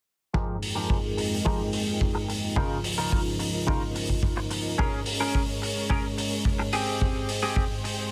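A straight 4/4 nu-disco groove of punchy, rolled-off acoustic kick and hi-hat in a small, pumping room drives this sleek, cosmic excerpt, where a clean, compressed semi-hollow electric guitar riff with lush chorus, 12-bit sampler grit and digital delay rides over full, vintage sawtooth string machine chords with a sub octave, slow attack, ensemble chorus and sidechain ducking, both under filter sweeps through Fm11, Db69, Bbm7 and Abmaj7 in light reverb.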